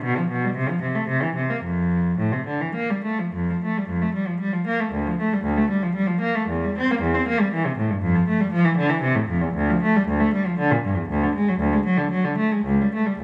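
A lone bowed cello opens the recording, its nasal, gut-string tone carrying a period-style character that sets an introspective, solemn mood. This is a baroque-style suite movement in triple metre, cut from a longer piece, and the player shapes it with a flexible, rubato feel. The line moves through the instrument's lower and middle register, from C#2 up to C4, with a reedy edge to the sound. A short opening passage gives way to a new section at 3.3 seconds, which carries on until the music breaks off at 13.2 seconds. The cello sits up front, yet a wet recital-hall reverb with a long 1.5-second tail surrounds it and lends the single player a spacious, contemplative air.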